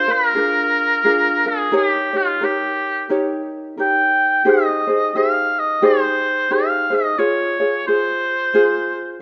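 Hawaiian music with a languid, dreamy mood, moving at 88 BPM in 4/4 with a gentle swing on the eighth notes in Ab major. A clear oboe carries the melody in a classical style with light vibrato, its vintage tone sitting up front as a solo voice. Beneath it, an acoustic ukulele provides thumb-plucked accompaniment, light and warm, also placed up front. Both parts play together for the full 9.2 seconds of this short cut from a longer piece. The harmony drifts through Bb7, Eb7, Abmaj7 and Dbmaj7, and a light reverb gives the pair a soft sense of space.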